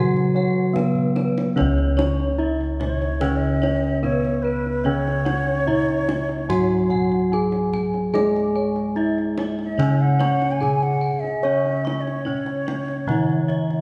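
This Javanese gamelan piece is ceremonial and shimmering, a short section cut from a longer work and set in a slendro tuning. A bronze metallophone carries the melody with a dark, smooth ring under a wooden mallet, while a second metallophone supplies a lower accompaniment. Above them, a metallophone struck with a horn mallet spins arpeggios whose paired tuning gives airy, shimmering beats, and a row of bossed gongs adds its own bright arpeggios further back. Lower down, another set of bossed gongs plays the bass with padded beaters, sounding round, mellow and full in a close, dry pickup. The tight, vintage-sounding kendang enters at 0.2 seconds and sits in the background, with a drum fill from 1.0 to 1.6 seconds. A breathy bamboo bansuri joins at 2.8 seconds with a second line marked by vibrato and a crisp attack, and the ensemble blooms inside a long church reverb.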